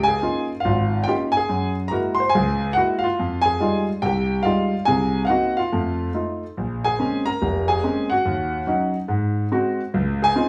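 Solo jazz on an intimate concert grand piano, a late-night, moody fragment from a longer piece that swings at 142 BPM in F minor, shifts to B-flat minor at 6.6 s through lush ninth chords, and spans deep bass notes up to C6, with audible action noise under a wet studio reverb.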